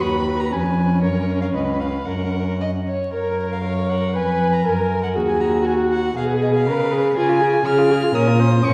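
A cheerful, graceful cut from a quick classical-period movement for string quartet in F# major opens with all four gut-string, period-style players at once, moving at 119 BPM in 2/4 with rubato: the first violin carries the melody with light vibrato, the second violin plays a warm inner line, the viola's smooth-topped accompaniment sits beneath, and a rich, nasal, up-front cello holds the bass, all four sounding reedy and heard from further back in a wet scoring-stage reverb over a layer of vinyl crackle.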